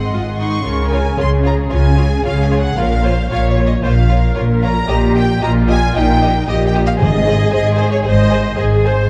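A dark, warm scoring-stage sound with moderate reverb frames this soaring, adventurous cinematic cue in Db major at 113 BPM, where a focused violin section carries the melody over a lush second violin line, rich vibrato violas and smooth bowed cellos, with an up-front double bass section adding soft-attacked, expressive portamento and a round, soft-mallet timpani sounding in the background from 7.0 to 7.8 s.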